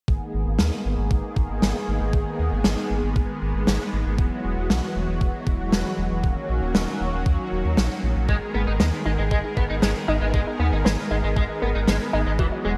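This cinematic, nostalgic synthwave excerpt opens with a smooth, detuned supersaw holding sustained chords in ensemble chorus, a deep, round analog bass with a filter sweep running through it, and a thumpy, tape-toned electronic kick, with the chords and bass pumping to the sidechain. A natural, medium-tuned acoustic snare with gated reverb joins at 0.6 seconds, sitting up front beside the kick. The harmony moves from G#madd9 through Eadd9 and D#m7 before returning to G#madd9. At 8.3 seconds a nasal, wave-folded analog pluck enters in the background with arpeggios under chorus and digital delay. At the same moment, a twangy, picked electric guitar at the edge of break-up adds a riff in ensemble chorus and delay. A moderate, lush hall reverb and bright 1980s-style digital production frame the whole passage.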